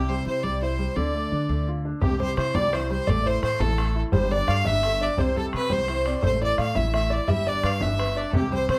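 A clear, intense fiddle carries the melody up front in this driving, spirited Celtic jig, bowed by one player with light vibrato, while a second fiddle traces its own line further back in the background. Set in 6/8 at 114 BPM with a straight feel, the excerpt is cut from a longer piece and runs through the same section twice, moving over chords of C, Dm, A5, Gsus2 and G. A woody, polished upright piano supplies intimate accompaniment with audible action noise, and a pizzicato upright bass with steel strings sits up front, thumpy and warm. At 2.0 s an open-back banjo joins with a very quiet, fingerpicked second line, mellow and plunky with a twangy edge, alongside a boomy bodhran that sounds distant, as if in a large room. Moderate studio reverb gives the ensemble a sense of space.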